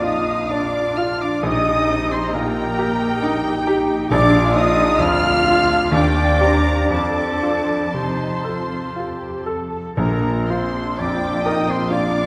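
Passionate and lush, this romantic movement for piano and orchestra unfolds in a rubato three-time, cut from a longer piece. A clear, smooth grand piano sits up front carrying the melody alongside veiled, con sordino violins, while a hollow, airy flute, an oboe and a second muted violin line weave supporting parts. Distant muted violas, a dark French horn section and bowed cellos and double basses fill out the background in a reverberant concert hall, with soft, round timpani strokes arriving at 4.1 and 10.0 seconds.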